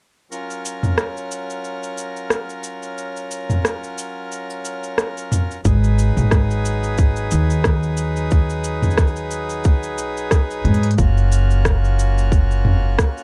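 Folktronica at 90 BPM in F# major, delicate and hopeful, with a gentle swing on the 16ths. A reedy, hollow accordion holds sustained chords bathed in plate reverb, alongside an up-front organic electronic drum kit of crisp hi-hats, rim clicks, shaker and toms from 0.3 seconds; at 5.7 seconds a woody pizzicato upright bass and a tight, tape-warm electronic kick join in. The chords move from F#maj7 to G#m7, and a drum fill at 10.6 seconds brings the harmony back to F#maj7 for a new section, set in a dark, warm production with light reverb.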